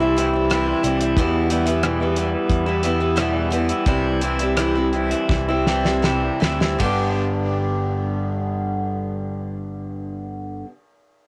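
A home cassette recording with moderate booth ambience carries a hopeful, warm folk rock and heartland rock feel in G major at 77-91 BPM in straight 4/4, cut from a longer piece, with a bright, boxy parlour steel-string acoustic guitar picked up front beside a slightly broken-up, lo-fi, compressed electric guitar riff through a small old amp with subtle chorus, a growly, punchy picked electric bass underneath, and a damped 70s kit with a fat snare and tight kick, as the tempo slows from 1.2 seconds into a drum fill at 5.3 seconds, the drums stop at 7.0 seconds, and the chords move from C and Em to G.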